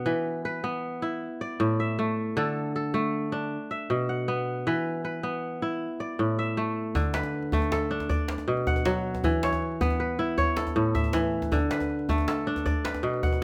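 West African traditional music in 12/8 at 105 BPM in D major, this hypnotic, warm excerpt features an up-front, crisp, fingerpicked kora ringing out arpeggios from A2 to F#5 under light reverb and close, detailed microphones, joined at 7.0 seconds by a deep, compressed, saturated djembe struck with hard hands and buzzing with metal rattles as the chords cycle through E5, A5, D5 and Bm.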